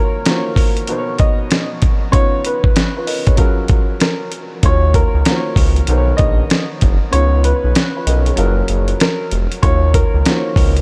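Moody and dark, this boom-bap hip-hop excerpt moves at 96 BPM in Eb minor with a swung 16th feel, opening on a break where a clear, slightly detuned upright piano carries the melody through a diffuse ambient delay over a dark, woody upright piano with cassette-tape colour, while a gritty, compressed sampler-style drum kit with a thumpy kick joins at 0.3 seconds. A smooth, saturated synth bass built from detuned sawtooth and square waves with a moving notch enters up front at 4.6 seconds, and the kick drops out from 7.1 to 9.6 seconds as the chords cycle from Ebm7 through Bmaj7, Db7 and Gbmaj7. The clear upright piano's audible action noise and a small-room ambience lend an intimate, worn character.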